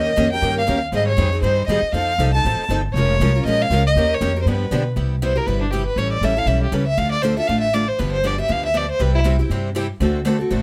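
Acoustic string swing in the jazz manouche style, this lively, playful excerpt moves at a brisk 238 BPM in 4/4 with a swung eighth-note feel, starting in Ab major before shifting to C major at 5.0 s. A close, bowed violin carries the melody with vibrato, soft attack and expressive portamento, sitting up front in a plate reverb, and it takes a solo from 5.0 s before stopping at 9.2 s. Two picked steel-string acoustic guitars supply the accompaniment with bright, fresh-string tone and audible finger squeak: a concert-size guitar plays throughout, while a parlour guitar sits in the background, dropping out at 4.8 s and returning at 9.0 s. An upright bass anchors the low end with woody, thumpy gut-string pizzicato, placed up front alongside the violin. The harmony travels through jazzy dominant sevenths such as Eb7, F7 and G7, landing on Cmaj7 and cycling through A7 and Dm before closing on D7, all within a light overall reverb.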